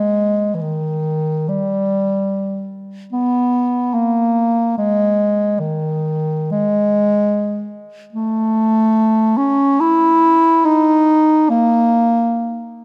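Classical in style, this short passage cut from a longer piece features a single bass clarinet playing entirely unaccompanied. The mood is yearning and meditative, unfolding in free time with an expressive sense of phrasing in G# minor. The instrument's tone is mellow, and it sits up front, heard from the opening through 12.7 seconds across a range from D#3 to E4. A moderate concert hall reverb, with a decay of 2.5 seconds, gives the solo line a spacious, resonant halo. Tuned slightly below standard pitch at A4 = 438 Hz, the recording feels intimate and reflective, like a private moment of contemplation.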